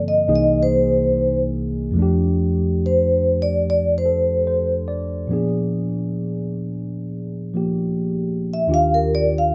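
This jazz ballad excerpt, wistful and smoky, moves at a slow 72 BPM in 4/4 with a swung eighth-note feel, tuned slightly below standard pitch. A vibraphone played with medium mallets carries the melody as the featured soloist throughout, its metallic, ringing tone shimmering with fast motor vibrato. A clean tine electric piano accompanies it through a combo amp with analog chorus, moving through C7alt, F6, Bb7b9 and Ebmaj9. Both parts sit up front in a close, detailed recording with light reverb.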